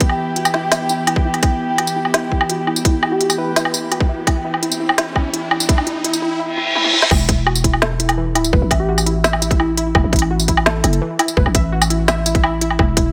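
A half-time drum and bass groove in 4/4 drives this tense, spacious excerpt, anchored by a tight, layered, overdriven electronic kick and a tape-warm electronic kit of woody snare, crisp hi-hats, tambourine, woodblock, toms and crash cymbal. During the opening build-up, a dark chamber cello section holds soft, bowed sul tasto chords with light vibrato and sidechain pumping, while a warbling, lo-fi, detuned pluck spins arpeggios under a filter sweep and a pulsing gated texture sits in the background. A round, gentle FM lead with chorus and phaser adds brief keys-like phrases, and an electronic riser and reverse cymbal, capped by a drum fill, carry the music into the drop at 7.1 seconds. There the strings and gated texture have fallen away, and a growling, buzzy 808-style bass with tube saturation takes over beneath the pluck as the harmony shifts to a suspended chord. A lush hall reverb gives the mix its sense of depth.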